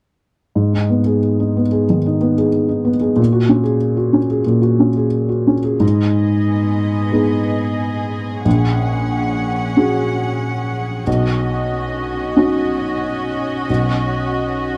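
Neoclassical piano and strings in a melancholic, reflective mood, cut from a longer piece, with a loose rubato feel. A felt-muted upright piano carries the accompaniment from 0.6 seconds, its mellow, boxy tone sitting up front with audible action noise. At 5.8 seconds a quieter studio string section joins with sustained, bowed chords, soft-attacked and sul tasto with vibrato, all set in a dry, close 1970s-style recording with light reverb.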